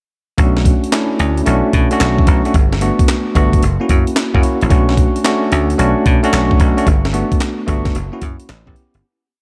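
A dark, warm production with light digital reverb frames this short, bouncy and punchy new jack swing piece in B minor at 111 BPM, its 16ths swung hard. Up front, a gritty, compressed sampler-style breakbeat kit drives a drum-machine beat with a thumpy kick, hi-hat and a high-tuned snare layered with handclaps. A dry, foam-muted thumbed slap bass plays a bright, bouncy synth-funk line, and a clean, bell-like tine electric piano adds syncopated rootless chord stabs over Bm7, Gmaj7 and F#7, all entering at 0.4 seconds before the music fades out from 6.9 seconds and closes on A7.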